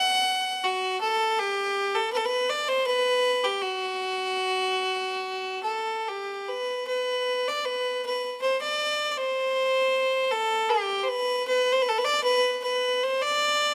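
Wistful and tender, this short piece of Celtic folk, cut from a longer work, unfolds in a rubato three-beat lilt carried by a single bowed fiddle playing solo from start to finish. The fiddle sits up front, bright and earthy, captured by close, detailed microphones with a light touch of reverb as its line moves through two sections, the second beginning at 6.1 seconds.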